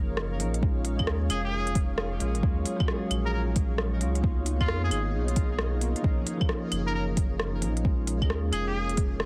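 A bell-like tine electric piano, a cloudy granular pad and a round, up-front sub bass open this rainy, wistful future garage excerpt together, all pumping with sidechain, while a reversed, dreamy swelling texture sits in the background. Claves, crisp hi-hats and rim clicks from an organic electronic kit arrive almost at once, joined at 0.6 seconds by a deep, layered kick over swung sixteenths and rich chords such as Bmaj9#11 and Ebm11. From 1.3 seconds a distant, nasal trumpet with a straight mute takes a forceful jazz-style solo with vibrato and scooped notes, trailed by tape echo.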